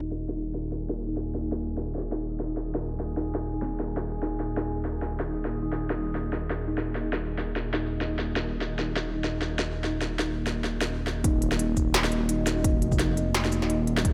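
A rumbling, detuned sawtooth bass sits up front in this tense, spacious half-time drum and bass excerpt, driven by an industrial drum kit with a clanging snare, crisp hats and shaker. In the background, a plucked, woody kalimba plays arpeggios through a filter sweep and digital delay, while a moody, wave-folded pad holds sustained chords with chorus and sidechain pumping, and an eerie, nasal metallic drone hovers until 11.2 seconds. At that point the drop arrives as a heavy electronic kick enters and carries through to 14.1 seconds.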